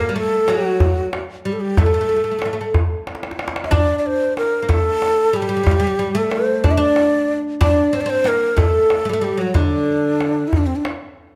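A moderate recital-hall reverb surrounds this up-front Persian modal ensemble excerpt, a passionate and stately passage in 6/8 at 62 BPM (dotted quarters) in dastgah Homayun on D. A breathy, mellow end-blown ney carries the melody with expressive vibrato and tongued notes, while a woody, deep fretless oud, plucked with a plectrum on double strings, plays a second line beneath it. A tight tombak struck with hard hands enters at 0.5 s and adds a short fill from 3.1 to 3.7 s.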